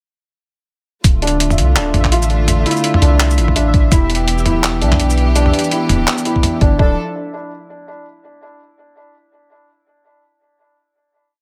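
A dry, close-sounding short piece of tense, cinematic half-time drum and bass, where gritty, pitched-down sampler drums with claps, shaker, closed hat and low toms ride a thumpy electronic kick and a deep, gliding 808-style bass under sidechain-pumped strings played sul tasto, a felt-muted upright piano looping a ten-step arpeggio through delay, and a faint detuned triangle texture holding a high note from 1.4 seconds before everything settles on a final chord at 6.8 seconds.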